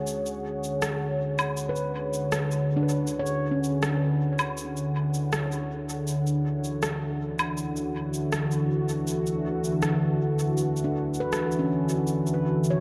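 Ambient dub at 80 BPM in a straight 4/4, this hazy, spacious fragment of a longer piece sits in E mixolydian, moving from E13 to Dadd9 at 6.1 seconds. A deep, moody pad carries the harmony from the start with sustained chords built from detuned sawtooth and sine tones with a sub octave, its slow attack and long release softened by chorus and its own reverb, and it sits up front in a dark mix. Electronic shaker, rim click and woodblock supply the drums, sounding tape-warm and re-recorded in a large room, with dub echo trailing each hit. A ringing, meditative handpan of nitrided steel plays bright arpeggios from 1.7 seconds, pulls out at the chord change, and returns at 10.8 seconds, filtered and echoed in dub fashion. A moderate, lush hall reverb wraps the whole recording in a dark, warm atmosphere.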